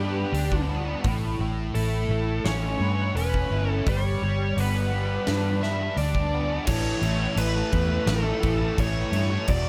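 A steady, straight 85 BPM pulse in 4/4 carries this hazy, wistful shoegaze and dream pop fragment in A mixolydian, where a double-tracked, compressed fuzz guitar riff sits up front beside a round, foam-muted fingered bass, a dark, overdriven lead guitar melody drifts through analog delay, a big acoustic arena kit with a fat snare and punchy kick joins at 0.3 seconds, and the harmony moves from G through Aadd9 and back to G before arriving on A at 6.7 seconds in a small room ambience.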